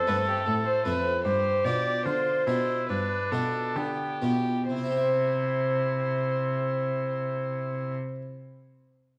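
Oboe, violin, harpsichord and cello begin together in this serene, radiant excerpt from a baroque-style classical sonata movement with continuo, the oboe carrying the melody with light vibrato above a dark, gut-strung violin second line. An airy, plucked harpsichord on two sets of strings fills out the accompaniment while a nasal, reedy cello holds the bass, and the pace slows through the first 4.7 seconds as the harmony moves from F to G7 and settles on C. Wet recital hall reverb surrounds the players, and a worn cassette-tape warble adds a drifting wobble to the pitch.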